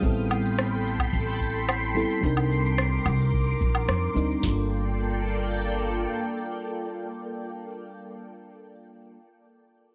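Sunset chillout at 109 BPM in a straight 4/4, smooth and relaxed, moving through Am9, Cm9 and Gm9 chords in this short cut from a longer piece. A round, full-bodied FM electric piano with chorus, phaser and delay plays accompaniment under silky string-machine chords with slow attack and ensemble chorus, while a woody, thumpy pizzicato upright bass carries a filter sweep until 4.4 seconds. An overdriven vintage rhythm box with a deep kick and metallic hats plays alongside a layered electronic shaker, woodblock and rim click, and both drop out around 4.4 to 4.6 seconds, all set in light digital ambience.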